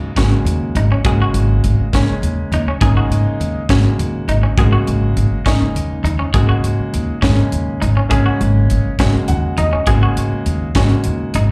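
A woody upright bass and a clear grand piano, its plate reverb and slapback echo lending an open sheen, begin this slick, driving electric jazz fusion passage in 6/8, soon joined by bright, chorus-lush stabs from a semi-hollow electric guitar and a polished drum kit with a punchy kick and high-tuned snare, the band caught live through a club's PA as the piano slips in a short fill at 9.0 seconds.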